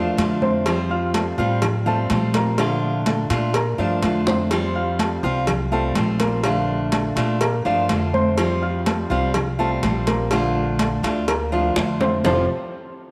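A wet echo-chamber reverb with a long tail bathes this short, sunny excerpt of Cuban son and guajira, played at a relaxed 124 BPM in 4/4 with a straight feel in F major. Up front, a full-bodied jumbo steel-string acoustic guitar carries the accompaniment with fingerpicking, its finger squeaks audible. A dark, mellow concert grand piano with a worn, intimate character, audible action noise and a deep bass spins arpeggios. An upright bass played pizzicato adds a woody tone from its steel strings. Soft-handed, high-tuned congas with a thick-skinned, vintage, band-limited sound sit in the background, while round, low-tuned bongos and cowbell, struck with hard hands, come through compressed and saturated, with drum fills at 4.3 seconds and again at 11.8 seconds. The harmony opens on a rootless Bbmaj7, then alternates between Fadd9 and Bbmaj7 throughout the single section.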